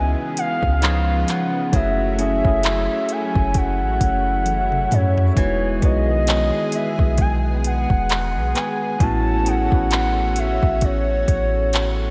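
A dreamy mix soaked in plate reverb frames this sensual, longing contemporary R&B passage with a swung sixteenth feel, cut from a longer piece. A smooth, gliding sine lead with vibrato carries the melody through chorus and tape echo over a clean tine electric piano, a lush, detuned unison pad that pumps under sidechain, and a fingerpicked flamenco guitar set in the background with its own tape echo, while a deep, boomy 808-style bass sits up front. The electronic R&B drum kit, with soft kick, metallic hats, handclaps and toms run through overdrive, enters at 0.4 seconds and plays a fill from 4.5 to 5.4 seconds as the chords move from C#m7 through F#m7 and Emaj7 to A69.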